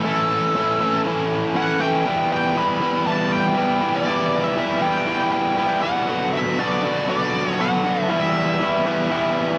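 Rock with a brooding, driving mood, this 9.6-second fragment of a longer piece moves at 119 BPM in a straight 4/4 and sits in E dorian. A cranked, double-tracked stack guitar carries the riff up front, its picked, overdriven tone spanning A2 to F#4. Above it, a biting lead guitar plays the melody between A4 and B5, its bright, picked sound shaped by wah, overdrive and slapback echo. Both guitars play for the whole 9.6 seconds over a progression that starts on A, moves to Em at 2.1 seconds and Bm/D at 6.1 seconds, then returns to Em. The dry, close sound recalls a 1970s studio, with light reverb and some lossy compression artefacts.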